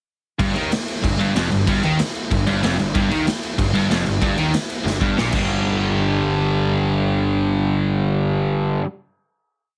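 A heavily compressed, radio-like sound with lossy artefacts and light reverb frames this short, aggressive punk rock piece at 188 BPM, where a gritty, up-front garage drum kit in a bright stone room drives a fast groove under three overdriven guitars (a bright single-note riff up front, a dark sludgy one and a double-tracked biting one behind) and a growly fuzz bass doubling the riff in Gm, until a drum fill at 4.9 seconds leads to a final G5 hit that rings from 5.5 seconds to the close.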